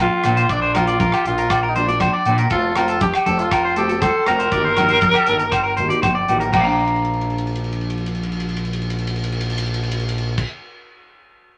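A raspy, growling alto saxophone leads this carefree, danceable highlife guitar band excerpt, riding up front with vibrato and scooped notes over a thumb-plucked nylon-string guitar, a thick FM bass, ringing agogo bells and low-tuned congas sitting in the background. Just after the start, a damped 70s drum kit with dark cymbals and a tight kick comes in, and a twangy, slightly broken-up electric guitar adds picked arpeggios near the front. The saxophone drops out at 6.0 seconds, and the drums take a fill from 6.8 seconds to the end of the cut.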